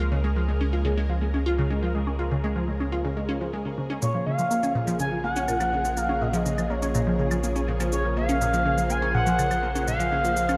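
A phased string machine holds swirling, vintage chords over a round analog bass and a juicy, squelchy blip pluck riff drenched in phaser, lush chorus, shimmer reverb and tape echo, while a very quiet bubbling stepped-filter texture sits in the background in this expansive, hypnotic slice of sequencer-driven space music. At 4.0 seconds an expressive, mellow synth lead with vibrato enters up front alongside echoing electronic shaker and claves, as the harmony moves from Db6 to Bbm. The echo-heavy mix sits in a wet spring reverb that lends the whole passage a floating depth.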